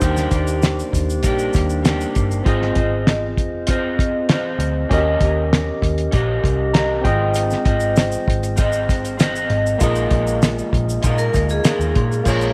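Indie pop with a bedroom-pop haze, this sunny, nostalgic excerpt moves at 98 BPM in a straight 4/4 in Eb major, tuned slightly below standard pitch. A cloth-damped, thuddy drum kit sits up front with a fat snare, tight kick and dark cymbals, its dry, rolled-off sound joined by a vintage muted bass that is round and punchy from the foam-muted strings. A lo-fi electric guitar through a small old amp, slightly broken-up and also up front, carries analog chorus and a warbly pitch drift, while a barky tine electric piano plays clean through a combo amp and adds a fill from 6.4 to 7.4 seconds. A grainy tube shaker appears low in the mix at the start and again from 7.3 seconds. Near the close, at 11.0 seconds, a vibraphone with medium hard mallets enters with a metallic ring, fast motor vibrato, subtle chorus and tape echo. The chords move from Ebmaj7 through Ab6 and Eb7 to a Bb7sus4, all in a light studio reverb.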